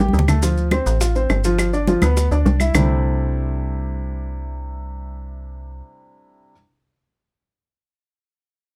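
A lively, danceable Afro-Cuban jazz excerpt in straight 4/4 at 207 BPM opens with a drum fill, as congas with a thick skin and round low-tuned bongos drive the groove from the background alongside woody claves and grainy maracas until they all stop at 2.8 s. Up front, a warm baby grand piano with short sustain comps over a Dm7 to G7 progression resolving to C69 in C major, anchored by a metallic FM bass with a fast, decaying attack. The bass drops out at 5.8 s and the piano closes alone at 6.5 s, all under light reverb.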